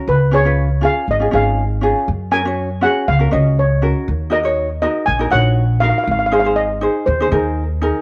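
Calypso at 120 BPM in F# major, bouncy and sunny, in which a shimmering, mellow steel pan played with soft rubber sticks carries the lead melody up front in a boxy small room, over bright thumb-plucked ukulele and a woody, thumpy pizzicato upright bass on gut strings, moving through C#, F#add9, D#m7 and G# chords with light studio reverb in this short cut from a longer piece.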